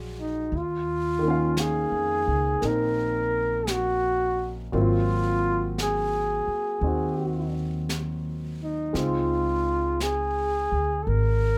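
A grand piano with audible action noise and long sustain opens this wistful, intimate jazz ballad alongside a woody pizzicato upright bass, joined at 0.2 seconds by a breathy, mellow flugelhorn melody with light vibrato and at 0.5 seconds by an airy brushed drum kit with a high-tuned snare, all moving at a slow, swung 57 BPM through Bb7b13, Ebsus2, Ab13 and Dbmaj7 in a dry, close sound.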